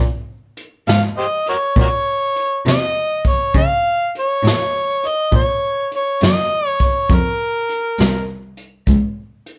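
Slow blues in 12/8 at 67 BPM in Bb minor, smoky and mournful, built on a single Bbm7 chord, where a dark bowed cello carries the bass line with vibrato and portamento, a vintage brush kit of hi-hat, punchy kick and snare sounds roomy and distant, and a gritty overdriven harmonica solos with tongue slaps and light vibrato from 0.9 seconds, all under light reverb and the warbly pitch drift of worn cassette tape in this brief cut from a longer piece.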